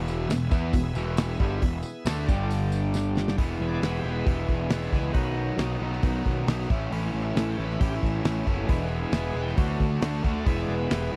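Classic rock at 136 BPM in E major, confident and driving, with an up-front double-tracked semi-hollow guitar riff, a fuzz-laden picked bass, a fat-snared damped 70s drum kit, a jingly background tambourine until 3.2 seconds, and a shouting tonewheel organ through a slow rotary speaker that moves from sustained chords into a solo at 3.4 seconds after a drum fill, all in a dry, close small-room sound.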